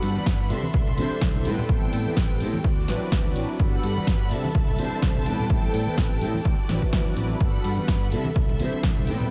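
Mellow, dark synth brass with chorus and phaser and lush, bowed symphonic strings open this feel-good, funky slice of filtered disco house over a warm fingered electric bass with tube saturation, the three pumping under a low-pass filter, alongside a dry, overdriven analog drum machine on snare and pumping hi-hat and very quiet tube shaker and congas, everything swung on the 16ths, until a punchy, tape-tinged electronic kick arrives up front at 0.3 s to drive the cycling chord progression.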